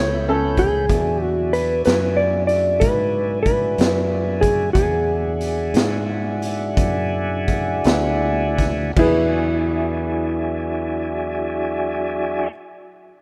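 A clean, dark lap steel carries the melody from 0.6 seconds in this laid-back, swaggering slow blues in 12/8, moving at 52-62 BPM in E mixolydian over A9 and E9 chords and slowing down from 3.5 to 9.0 seconds. A smooth tonewheel organ holds sustained chords through a slow rotary speaker, a round, direct fingered electric bass anchors the low end, and a raw garage drum kit with a high-tuned snare, punchy kick and gritty, saturated room sound plays until 9.1 seconds. A clear, woody upright piano with audible action noise and analog delay adds a second line at the very start and again from 9.0 seconds, all captured in a rough home demo mix with little reverb, cut from a longer piece.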